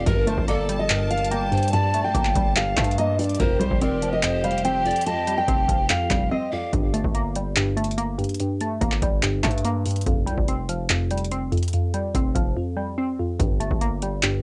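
Hip hop in a trap vein, this melancholic, menacing cut from a longer piece moves at 144 BPM with a half-time feel in G minor, swaying between Gmadd9 and Fsus2. For the first 6.7 seconds a dark, full-bodied fingerpicked steel-string acoustic guitar carries the melody, with finger squeaks audible, while a breathy bamboo pan flute with chiff and vibrato traces a second line through analog delay, and a bright, lush bowed string section holds sustained chords low in the mix. Throughout, a glassy, crystalline wavetable pluck with a warbling chorus and detuned unison sits up front as accompaniment, over a distorted, saturated 808-style bass with a noisy edge. An overdriven analog drum machine with a deep kick, metallic hi-hats, handclaps and rim clicks sits up front, with brief breaks around 6.3 and 12.6 seconds. After 6.7 seconds the guitar, flute and strings fall away, leaving the pluck, bass and drums, and the dry, lo-fi sound of a home cassette recording gives the whole thing a worn, intimate grit.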